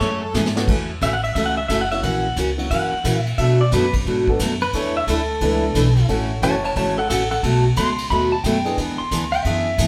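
A brisk swing shuffle at 178 BPM in 4/4 drives this cheerful western swing excerpt in A major. A vintage brush kit sets the pace with tight kick, hi-hat, ride and brushed snare, its top end rolled off, and a short drum fill leads into a pedal steel guitar solo at 0.7 seconds. The steel sits up front, twangy, clean and compressed, played with fingerpicks and slide, with volume swells. Beneath it, a bright, full-bodied picked dreadnought acoustic guitar and a thumpy, woody upright bass on gut strings outline changes moving from Amaj9 through F#7, Bm7 and E7sus4 toward B7 and E7. A clear, polished upright piano joins at 0.6 seconds as a quieter accompaniment. The band plays live together in a moderate stone room, giving the cut a warm, natural ambience.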